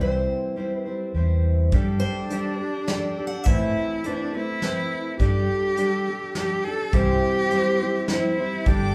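This peaceful, gentle acoustic folk cut in G major at 104 BPM in 3/4 opens with a bright picked steel-string guitar melody over an up-front, woody, shimmering twelve-string and a dark, round fingered electric bass. At 1.7 seconds an expressive bowed cello enters with vibrato and portamento, alongside a distant, roomy brush kit with a punchy kick; the guitar melody stops at 4.9 seconds. A lush symphonic string section surfaces at 8.7 seconds, just before the cut ends, all captured as a band playing live in one large studio with moderate reverb.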